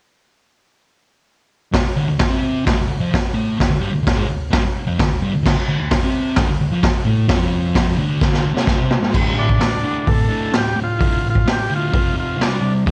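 A gritty, swaggering slice of garage rock recorded to cassette tape, set in a small room with light reverb, this fragment is cut from a longer piece. At 130 BPM in a straight 4/4 and D minor, a double-tracked fuzz guitar and a raw garage drum kit both kick in at 1.7 seconds, the picked, distorted riff sitting up front with a warm, electric tone. The drums are boomy in the kick and saturated overall, with a medium-tuned snare, hi-hat and crash cymbal, a rolled-off top and the grit of a vintage 12-bit sampler. After a drum fill ending at 9.1 seconds the music moves into a new section, and an overdriven combo organ enters at 9.4 seconds with a buzzy, vintage melody carrying light vibrato. The harmony holds on D minor before shifting to F5 and then C5 in the closing moments.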